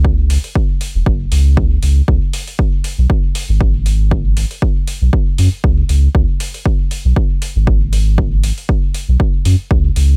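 Dub techno at 118 BPM in 4/4 with a light 16th-note swing, this cavernous, nocturnal fragment of a longer piece sets a deep, round sine sub bass with sidechain pumping up front beside a punchy, overdriven kick and quieter metallic, overdriven hi-hats, all in a dry room with little reverb.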